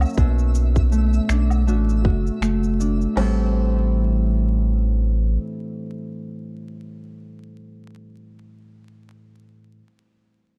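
A dry, close sound in the manner of a 1970s studio, dusted with vinyl crackle, frames this delicate, intimate folktronica fragment, cut from a longer piece and carried on a lightly swung feel. An acoustic Celtic harp sits up front, fingerpicked and ringing, playing arpeggios through a tape echo for the full 9.8 seconds. Beneath it, a round analog bass, deep and dark with a nasal, sine-like tone and a fast attack, holds sustained low notes until 5.4 seconds. In the opening seconds, tape-tinged electronic woodblock, shaker and finger snaps are joined at 0.2 seconds by an organic electronic drum kit with a tight kick, woody snare and crash cymbal, re-recorded in a large room, while a twinkling granular FM texture adds octave-up shimmer in the background. The harmony moves from Bm7 to Am7 at 3.2 seconds, around the point where the drums and texture drop away and the harp and bass carry on.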